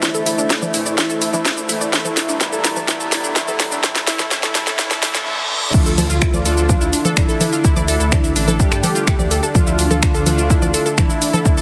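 A punchy, overdriven electronic kick and an up-front house kit with cracking snare, bright hats, congas, snaps and shaker drive this dark melodic techno cut at 126 BPM in D minor, while a drum fill, filter sweeps and a very quiet riser and reverse cymbal build through the opening, over a deep, moody pad with 12-bit grit and a faint overtone-sweeping drone. A fat, warbling synth brass carries the melody with delay, joined by brass stabs with dub echo, a lush unison pluck arpeggio, and a glassy, crystalline wavetable pluck as a very quiet second line. At 5.7 s the drop lands on a menacing, swelling detuned saw bass, all under a heavily compressed, radio-like sound with light digital ambience.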